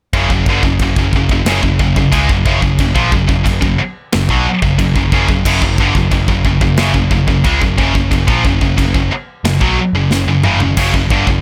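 A straight 4/4 pulse at 90 BPM drives this epic, heavy metal passage in F# major, where a bright, double-tracked high-gain guitar riff sits up front over a growly, overdriven picked electric bass and a polished, airy studio drum kit with a punchy kick, medium-tuned snare, toms, crash and china cymbal, all three playing throughout a dry mix that features a drum fill at 10.1 seconds near the close.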